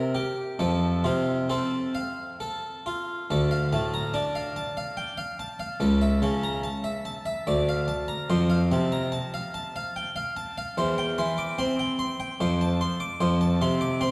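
Radiant and serene, this excerpt from a baroque-style classical suite movement sways in a rubato 3/4 at 66-75 BPM, with a solo French-style harpsichord, close-miked and up front, whose brilliant, full plucked tone and octave strings ring through a wet church reverb as the harmony turns from F major to D minor at 3.3 s before settling back on an F chord at 12.4 s.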